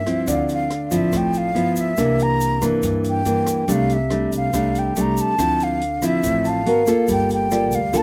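A breathy concert flute carries the wistful melody of this melancholic bossa nova excerpt, sitting up front with expressive vibrato, tongued notes, lifted highs and a short slapback echo. Beside it, a dark, fingerpicked nylon-string guitar plays classical-style accompaniment, also forward in the mix and touched by the same echo, while a woody, growly upright bass with steel strings supplies pizzicato lines underneath. In the background, an open jazz drum kit with a boomy kick, hi-hat and rim clicks joins alongside a grainy, bright egg shaker, in a straight 4/4 feel. A polished grand piano adds present, echoed touches at 0.3 seconds and returns from 6.4 seconds. The harmony moves through rich chords such as Dm9, C9 and F69/C before sliding through G#m9 to Gm9, all captured outdoors with a dry sound and little reverb.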